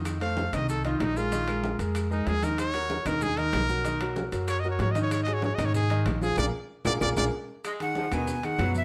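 A bright, present trumpet solo leads this passionate, danceable salsa until 7.2 s over a clear, up-front grand piano, a woody, thumpy pizzicato upright bass and a background bed of ringing congas, grainy maracas, tight high-tuned bongos, metal-shell timbales and claves, with a band accent and drum fill closing the phrase before a vintage saxophone section enters at 7.6 s and a breathy, crisp jazz flute takes the melody at 7.7 s.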